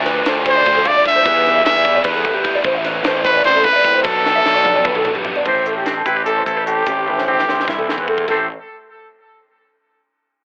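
Math rock with a midwest emo lean, this restless, intricate excerpt in 7/8 is led by a punchy, up-front trumpet singing a vibrato-laced pop-style melody over dark, compressed clean guitar arpeggios carrying analog chorus, a growly fuzz bass, and a crisp fusion kit with a high-tuned snare and tight kick that rolls through fills at 4.2 and 7.1 seconds. A double-tracked overdriven guitar riff sits crunchy in the background until 5.5 seconds, where a twangy clean guitar takes over the accompaniment as the harmony settles onto Am7. The whole mix is squeezed through a telephone-style filter with a moderate studio reverb.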